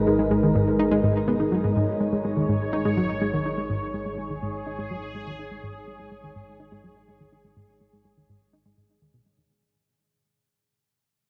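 Ambient, sequencer-driven space music with a mysterious, hypnotic mood, cut from a longer piece and resting on a single G#m chord throughout its 9.5 seconds. An up-front analog pluck riff, round and sawtooth-edged with a sub octave, chorus, tape echo, shimmer reverb and a filter sweep, sits over a bright, resonant, detuned pad of sustained chords that evolves through a filter swell. Beneath them a warbling, vintage analog drone with pulse-width modulation holds the bass in the background as it fades out, all within a dark production bathed in a huge, wet ambient reverb.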